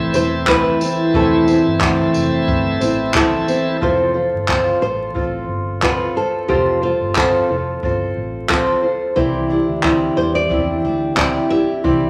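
An excerpt of tender, reflective acoustic pop at 90 BPM with a gentle sixteenth-note swing opens on Am/E, where a bright, lightly overdriven tonewheel organ holds sustained chords through a slow rotary speaker until 3.8 seconds, beside a full-bodied jumbo steel-string guitar fingerpicked up front and a fresh-stringed dreadnought picking arpeggios in the background. A classical nylon-string guitar carries the melody with audible finger squeak, over a dark, round, foam-muted electric bass and a brushed jazz kit with a boomy kick, handclaps and tambourine, as the harmony moves to F. The background arpeggios drop out at 4.4 seconds and return at 9.2 seconds on Cadd9, all set in a large, wet studio reverb with vinyl crackle.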